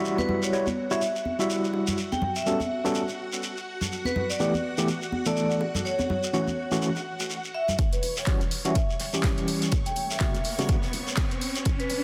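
Opening on gritty, overdriven tine electric piano stabs with fast tremolo and tape echo, a grainy shekere, shimmering string-machine violins and a ringing hard-mallet vibraphone melody over close congas and bongos, this moody deep house cut at 124 BPM in E dorian shifts at 7.8 s into a build-up where a punchy electronic kick, analog drum-machine handclaps and hi-hat, a dry, very quiet funk kit, a rubbery square bass in the background and a filter-swept vibraphone gather alongside an electronic riser from 9.1 s, all sitting in a moderate echo-chamber reverb with a dense, heavily limited master.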